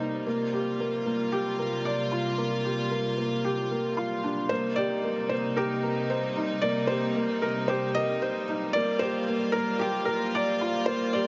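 Piano and strings electronica in C minor at 113 BPM, melancholic and moving, this short cut opens with a felt-muted upright piano riff, intimate with audible action noise and tape echo, over floating, sul tasto symphonic strings holding sustained chords that move from Gm7/C to Cm7 and back. At 4.5 seconds a build-up begins as a second muted piano line carries a mellow melody, also with tape echo, and a round sine sub bass enters, barely audible beneath. Everything sits in a huge ambient reverb with a soft, dark top end.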